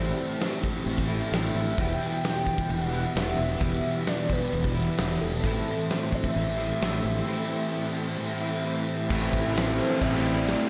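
Shoegaze and dream pop rock with a brooding, dreamy mood, moving at 131 BPM in a straight 4/4, this short cut from a longer piece rides a progression from Am7 to Em and back to Am7. A huge arena drum kit enters at 0.2 seconds and sits up front with a fat snare, punchy kick, hi-hat and crash cymbal, while a growling fingered electric bass, bright and overdriven, holds down the low end. A thick fuzz guitar plays a distorted, ensemble-chorused riff up front, joined by an overdriven electric guitar riff colored by reverse reverb. Above them a velvety synth lead carries the melody with a smooth, full-bodied detuned tone, vibrato, chorus and analog delay. A string machine ensemble lays very quiet, lush, phased chords underneath. At 9.1 seconds a new section begins as a very quiet double-tracked overdriven guitar riff joins, followed at 9.2 seconds by a jingly tambourine, and the whole mix is soaked in a lush hall reverb.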